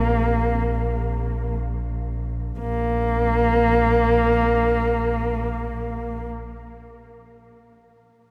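Proud and galloping in spirit, this short excerpt of Mongolian folk music moves in free time, slowing down across its first 2.6 seconds. A dark horsehead fiddle carries the melody around Bb3, its bowed horsehair strings giving a husky, woody voice shaped by vibrato and portamento. Beneath it, a single bowed double bass holds a deep drone on Bb1, warm and expressive, with its own vibrato and portamento. Both players sit up front yet sound distant, and they share the full 6.3 seconds before the recording is cut from the longer piece. A huge ambient reverb, with a decay of 6.3 seconds, surrounds the pair, and the music shifts into a new section at 2.6 seconds.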